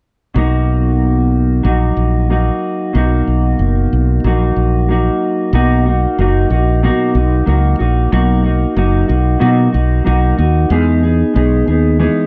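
A straight, unhurried 4/4 pulse at 93 BPM carries this hazy, nostalgic bedroom-pop fragment in B major, cut from a longer piece and tuned a touch sharp. A mellow, clean electric guitar with a compressed, dark tone sits up front, bathed in lush chorus and a warbly pitch drift, while a round, direct fretless electric bass with subtle chorus anchors the low end. Both sit in light reverb, resting on Bmaj7 before shifting to Emaj7 at 10.7 seconds, with a second section beginning at 5.5 seconds.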